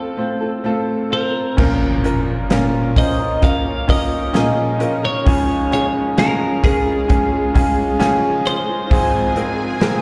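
Heard as a live gig through a venue PA with recital-hall reverb and small-room ambience, this melancholic, longing pop ballad fragment sets a twangy, compressed twelve-string electric guitar melody with warbly pitch drift and slapback echo over a brilliant, woody upright piano with its own slapback echo and dark, fingerpicked nylon-string guitar arpeggios with finger squeak, as a punchy, airy country drum kit enters at 1.6 seconds alongside an electronic impact, an ethereal, shimmering pad with chorus drifts in behind at 2.7 seconds, and a lush, bowed violin section with vibrato and slapback echo adds a second line at 8.9 seconds.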